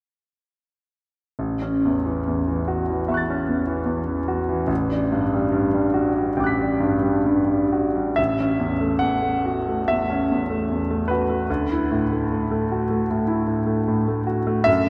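A clear, intimate concert grand piano enters at 1.4 s, playing alone in an impressionist classical vein with a luminous, serene mood. The playing is rubato in 4/4, moving through a sound that reaches from deep bass notes up into the high treble, with the clatter of the instrument's action audible up close. The harmony begins on an A6 chord and drifts to Gmaj7/A, then returns to A6 at 8.2 s, where a new section begins that settles on D69. The piano sits present and up front with a polished tone, while a wet church reverb lets each chord hang and bloom in a long, spacious tail. Cut from a longer piece, the passage closes at 14.9 s.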